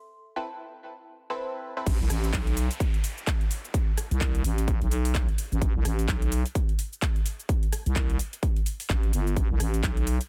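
A nasal, band-passed chord stab with phaser, chorus and delay opens this gritty, aggressive bass house excerpt in A minor at 128 BPM under a filter sweep, before the drop at 1.9 seconds brings in a growling, overdriven, pumping FM bass and a punchy up-front kick, alongside a big-room dance kit of crash, handclaps, metallic hats, rim click and shaker, with a downlifter sinking into the background until 5.6 seconds, all in a dense, heavily limited modern master.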